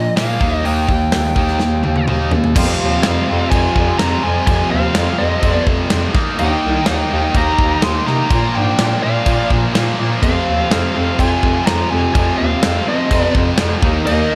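Hard rock in F minor at 125 BPM, aggressive and heavy, this excerpt opens with a biting, overdriven lead guitar melody with analog delay over two bright, distorted rhythm guitars (one scooped and high-gain) tucked in the background, a breathy, close-miked bass clarinet with light vibrato and scooped notes up front, and a punchy big-room drum kit whose fill from 1.6 to 2.6 seconds ushers in a very quiet, gritty tonewheel organ with key click and slow rotary speaker plus a dark octave-fuzz second guitar line at around 2.6 seconds, as the chords move through Eb, Fm and Bb.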